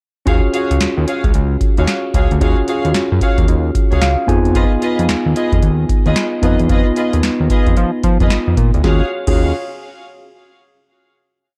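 Confident and bouncy, this short new jack swing R&B piece in Eb minor rides a hard-swung 112 BPM groove from a booming, overdriven analog drum machine with deep kick, crisp snare layered with handclaps, metallic hats and a crash, under a fat, detuned sawtooth synth bass with muted ghost notes and chromatic approach notes, a mellow tine electric piano holding rootless chords and adding a short fill at 3.8 seconds, and dark, woody bowed string stabs, all in a dark, warm production with light reverb before a final Ebm11 chord rings from 8.8 seconds.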